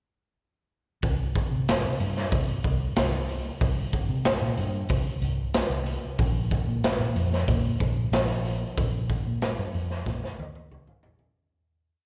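A dark, foam-muted electric bass and a saturated garage drum kit with a boomy kick start together at 1.0 s in this gritty, brooding blues rock and southern rock power-trio piece at 93 BPM, the round, amped bass playing a syncopated riff beneath a big rock groove from the up-front drums with their pumping small-room sound and rolled-off top, the pair heard as a live gig through the venue's PA with light recital-hall reverb, before a fade-out from 8.8 s and a closing drum fill at 10.1 s.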